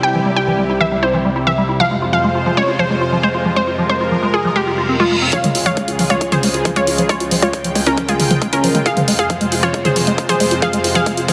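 Driving and bittersweet, this uplifting trance excerpt runs at 136 BPM in F harmonic minor, with a bright, detuned unison pluck carrying the melody through tape echo over a lush supersaw pad and a squelchy, resonant liquid acid bass playing arpeggios with analog chorus, all three breathing with sidechain pumping while filter sweeps move across the bass and pad. A reverse cymbal comes in at 4.7 seconds, and at 5.3 seconds a punchy, layered electronic kick and a dry, overdriven analog drum machine with hi-hat and toms arrive to start a build-up as the chords shift from C and Fm to Db and back to Fm. The mix sits in a lush digital hall reverb under heavy, radio-style multiband compression.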